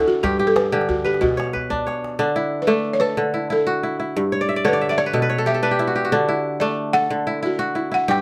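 Bright, fingerpicked kora arpeggios ring crisp and up front through this hypnotic, flowing West African string and xylophone music, an excerpt moving at 122 BPM in a straight 12/8 around D major with chords that shift among G, Bm and D. A woody, dry balafon played with rubber mallets carries the buzzing melody, while a deep calabash adds percussion and a closing fill before dropping out at 2.2 seconds, when the balafon takes a solo. The kora adds a fill from 4.3 to 6.1 seconds, all set in a modest small-room ambience.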